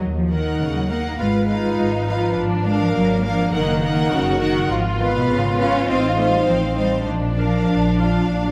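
A quick classical-period movement for string orchestra in Eb minor at 102 BPM, graceful and spirited, opens with warm, up-front double basses and focused cellos bowing the bass line, joined at 0.3 seconds by a rich, close first violin melody high in the register over smooth, even violas, and at 1.2 seconds by a lush, expressive second violin line, all set in a moderate concert hall reverb as the harmony moves through Ebm, Fdim/Ab and Bb7/Ab toward F7/A and a closing Bb in this excerpt from a longer piece.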